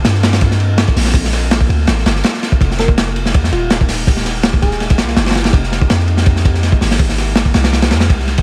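A gritty, saturated breakbeat kit with dark cymbals and a tight kick sits up front from the start of this dark, atmospheric drum and bass excerpt, over a deep, long 808-style sine bass with tube saturation and a very quiet, ethereal detuned pad holding Gm11 and then Fm11. Between 2.8 and 5.6 seconds a soft, round FM synth lead with a keys-like strike drifts in the background, coloured by chorus and dub echo. Vinyl crackle and a small room ambience give the jungle groove a dusty, intimate feel.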